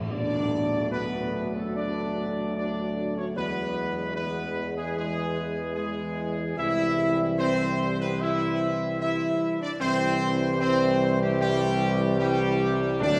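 A trumpet section carries the melody up front in this regal, triumphant ceremonial fanfare, a classical excerpt cut from a longer piece that moves at a stately 75 BPM in a straight 4/4. A French horn section with light vibrato holds sustained chords beneath it, while a dark, tight trombone section sits in the background and a distant, roomy solo tuba anchors the bass. The full band opens on an accent, and a very quiet, bright tam-tam sounds until 3.3 seconds. Round, soft-mallet timpani strokes mark the first instant and return at 13.0 seconds. The harmony moves from D to E to C, and a wet cathedral reverb with a long 5.7-second decay places the brass in a grand, resonant church or concert hall.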